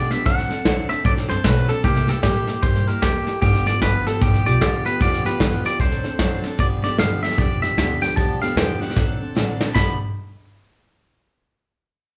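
A clean, compressed electric guitar with a twangy bite carries the melody up front in this upbeat, retro rockabilly cut, taken from a longer piece. Beneath it, a bright, full-bodied steel-string acoustic guitar is picked as accompaniment, with the odd finger squeak audible, while a pizzicato upright bass supplies a woody, thumpy low end. A soft brush kit with a dark, smooth, rolled-off top keeps a swung 4/4 groove up front, its tight kick and medium-tuned snare joined by hi-hat and crash cymbal. The music moves into a new section at 6.6 seconds, and the drums play a fill from 9.0 to 9.8 seconds over a D7 chord before the harmony returns to G7. The whole band sounds as if it is playing live together in a large studio room, wrapped in a moderate reverb.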